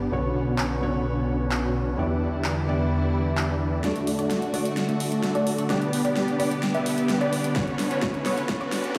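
Festival progressive house with a euphoric, emotional lift, cut from a longer piece: huge, detuned supersaw chords carry the riff up front with sidechain pumping, a low-pass filter and tape echo, over a thick, saturated saw bass with chorus, a soft felt-muted upright piano with audible action noise in the background, and dark, bowed strings holding sustained chords. A big-room drum kit of huge snare, handclaps and metallic hats joins at 0.6 seconds. The bass stops at 3.8 seconds as a build-up begins, with a filter sweep on the supersaw chords, a drum fill from the kit, and very quiet, punchy plucked arpeggios. A faint riser enters at 6.7 seconds and a punchy electronic kick drum arrives at 7.6 seconds as the chords cycle back to Bmadd9, all set in a large studio reverb.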